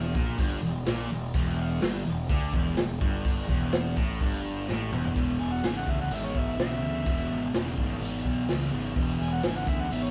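Recorded live in one stone room with moderate reverb and a faint mains hum, this driving, raunchy blues rock and southern rock power-trio excerpt at 126 BPM sets a bright, double-tracked fuzz guitar riff over punchy overdriven bass and an up-front vintage drum kit with a rolled-off top, until a drum fill at 4.7 seconds leads into a gritty, amplified harmonica solo with light vibrato, tongue slaps and scooped notes from 5.2 seconds as the harmony moves from E diminished to E.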